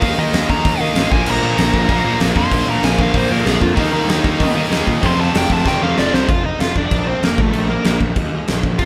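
A high-gain lead guitar, dark and distorted, tears through a solo over a fast 192 BPM punk rock excerpt, rebellious and energetic, as bright scooped and double-tracked distorted rhythm guitars sit in the background, a very quiet biting overdriven guitar joins at 1.3 seconds, a growly fuzz bass punches underneath, and an up-front big rock drum kit with a fat snare and bright cymbals drives a fill at 5.7 seconds before the rhythm guitars drop out at 6.3 seconds, all played live in one room with light reverb.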